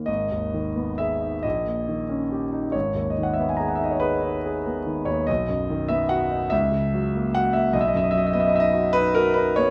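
In a rubato 12/8 lilt at 44-50 BPM counted in dotted quarters, this yearning, melancholic romantic nocturne in G# minor, cut from a longer piece, features a solo concert grand piano from 0.0 to 9.7 seconds spanning G#1 to A#5, its intimate, natural, up-front tone carrying deep bass, long sustain and audible action noise as the harmony moves from G#m through D#7/A# toward B and F#7/C#, framed by light reverb in a dark, warm production.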